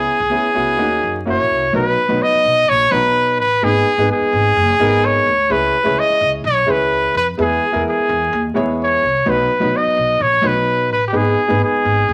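A bright, punchy trumpet sings the up-front melody with light vibrato and scooped notes from the first moment, backed by smooth, vintage upright piano and a woody, growly pizzicato upright bass, giving this joyful, uptempo 1960s-style soul fragment a warm glow under moderate studio reverb and vinyl crackle.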